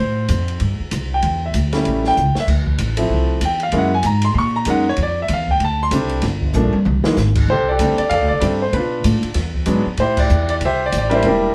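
A clear, up-front concert grand piano with deep bass carries the melody and solos through the first 7.5 seconds of this sophisticated, swinging jazz trio fragment in F major at 192 BPM, backed by a woody, growly pizzicato upright bass and a smooth, rolled-off drum kit with dark cymbals and a boomy kick that adds fills near 2.2 and 6.5 seconds, the band playing live in one room with moderate reverb.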